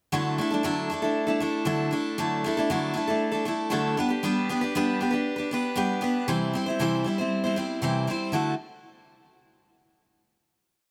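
Rock played by a lone picked steel-string acoustic guitar at 117 BPM in D mixolydian, with an open-road, nostalgic mood across this short, complete piece. The up-front jumbo guitar sounds bright and full-bodied with fresh strings and audible finger squeak, strumming sixteenths in open chord shapes through Dadd9, G and C before settling on a final Dadd9 at 8.3 seconds. Light reverb gives the guitar a touch of space.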